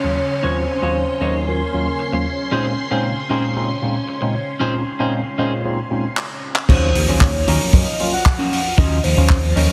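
Nu-disco with a cosmic, groovy feel: a gritty, overdriven tine electric piano and a dark, picked clean guitar under a filter sweep ride over lush phased string-machine chords and a round octave-layered synth lead with dub echo, until a drum fill at 6.2 seconds drops at 6.7 seconds into a punchy up-front kick, dark-cymballed vintage kit with handclaps, a glossy chorused synth bass and a background impact, all bathed in echo-chamber reverb and heavily compressed radio-style sound.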